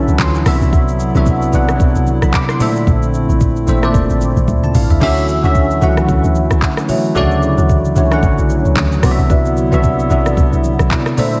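A dreamy, reverb-soaked mix in a lush hall opens this soulful, relaxed amapiano excerpt at 112 BPM, where a bell-like, bright tine electric piano with ensemble chorus sits up front over a hollow, flute-like pad that pumps against the beat, moving through chords like Cmaj9#11, Bbmaj9#11 and Dmaj9. A deep, round log drum bass with a dark, fast-attack decay anchors the low end, while a smooth, tape-toned R&B kit with soft kick, metallic hats, handclaps, rim clicks, shaker, toms and crash joins very quiet, thin-skinned congas in a swung groove. After a drum fill at 4.5 seconds, a woody rosewood marimba enters at 5.0 seconds with background stabs trailing a diffuse ambient delay.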